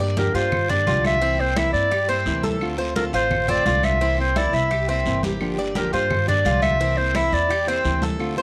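Cuban son and guajira with a relaxed mood, led by a warm, classical-style clarinet solo up front over a metallic, double-strung tres picking arpeggios, a bright, fingerpicked nylon-string guitar with finger squeak, thumpy pizzicato upright bass on gut strings, compressed, saturated congas struck with hard hands in the background, a raspy guiro and very quiet woody claves, set in a small room with light reverb.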